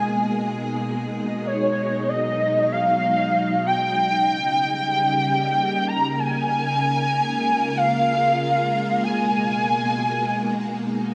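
A warbling, detuned lead with vibrato, portamento, ensemble chorus and tape echo sings a nostalgic melody from the start over silky, vintage string-machine chords with a slow attack and its own ensemble chorus, moving through Abmadd9, B6, Eb7 and Bbm7 in an eerie, intricate IDM fragment in free time, all set in a moderate echo-chamber reverb before a fade-out from 9.9 seconds.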